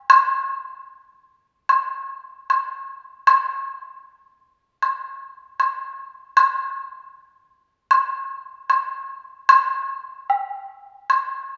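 A bright, acoustic woodblock sits up front from 0.1 to 11.3 seconds in this festive, graceful Chinese traditional passage cut from a longer piece, its free-flowing rubato pulse carried by a dark production and the lingering wet reverb of a recital hall.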